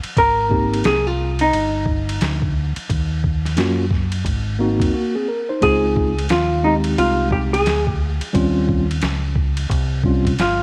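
Hip hop in a jazz-hop vein at 88 BPM with a swung 4/4 feel, this smoky, nocturnal fragment sets an up-front, dark hollow-body jazz guitar melody over a mellow tine electric piano, a round, punchy fingered electric bass and a gritty, pitched-down boom bap sampler kit with a thumpy kick, hi-hat, ride and snare, moving through Abmaj9, Ebm9, Ab9, Dbmaj9 and Eb13 with a brief break at 4.9 seconds, under light digital reverb and vinyl crackle.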